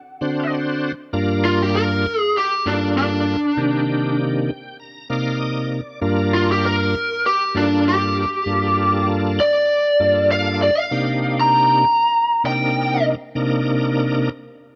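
Brooding and smoky, this short slice of a longer blues piece moves at an easy swung pace in four. A dark, picked electric guitar pushed through a small cranked amp carries the melody up front, its overdriven tone taking a solo from 1.1 seconds onward after a brief opening on a D7 chord. Alongside it, a full, shouting tonewheel organ fills out the accompaniment, also up front, lightly overdriven and colored by chorus vibrato and a slow rotary speaker. The organ steps forward with a fill between 4.2 and 6.0 seconds, while the harmony moves between Gm9 and Cm9. Light reverb gives the pair a modest sense of space, and the guitar drops out at 13.0 seconds, leaving the organ to carry on briefly.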